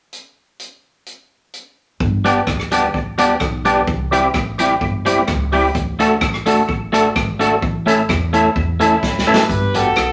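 A lightly swung 4/4 groove at 128 BPM drives this bouncy, cheerful ska excerpt in G major, where a big-band drum kit with a punchy kick plays alone until a woody pizzicato upright bass enters at 2.0 s, soon joined by a twangy, slightly broken-up electric guitar and a fat, percussive tonewheel organ with key click and fast rotary speaker as the chords move through G, C, D and A, before a distant horn section with light vibrato takes up the melody from 8.8 s and a drum fill follows at 9.0 s, all set in a wet studio reverb.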